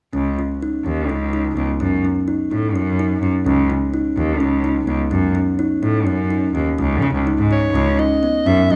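A woody, ringing kalimba spins arpeggios over a biting, bowed cello bass from the first moment of this urgent, restless chamber piece in 7/8, pulsing at 252 eighth-note beats per minute as the harmony alternates between C#sus2 and F#m. At 7.5 s a raspy, growling soprano saxophone takes the solo melody up front, breathy and punchy with vibrato. A moderate recital hall reverb and a dark production frame this short cut from a longer work.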